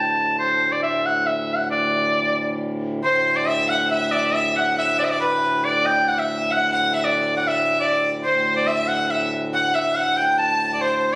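A rustic, festive medieval dance in 3/4 at 138 BPM in D mixolydian, speeding up throughout, where an up-front, bright shawm carries the melody with vibrato and scooped notes over a reedy, breathing pedal harmonium drone, a biting fiddle played by one player with an airy bow joins on a second line at 3.0 s, and the whole excerpt sounds like a phone recording made in a reverberant recital hall.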